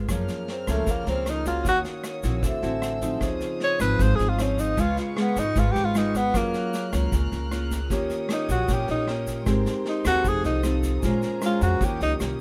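Bossa nova at 154 BPM with a breezy, sophisticated mood, cut from a longer piece, in which a breathy, mellow tenor saxophone with subtone and vibrato carries the melody up front from 0.5 seconds over fingerpicked, full-bodied nylon-string guitar with audible finger squeak, a dark, ringing vibraphone that adds a fill at 2.4 seconds, a woody, thumpy pizzicato upright bass, a vintage brush kit with punchy kick, rim click and rolled-off top, a grainy shaker and a soft, floating violin section sul tasto in the background, all in a dry studio sound through chords such as Gbmaj7, D9 and Abmaj9.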